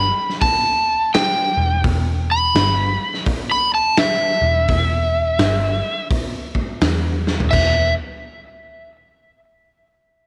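Blues rock in a power-trio, southern rock vein, this short cut from a longer piece has a heavy, brooding mood and a swung feel over a single E minor chord. An overdriven slide guitar carries the melody up front, dark and fingered, with tape echo trailing its lines through a solo that runs from the start to 7.5 seconds. Beneath it, a vintage muted picked electric bass sits low, amped and foam-muted with a round tone. A raw garage drum kit enters at 0.3 seconds, acoustic and punchy, with a medium-tuned snare, crash, hi-hat and toms, its rolled-off top set in a bright stone room, and it closes with a fill from 7.2 to 7.5 seconds. After that the harmony drops away, and the guitar and bass continue briefly before falling silent, all of it bathed in studio reverb.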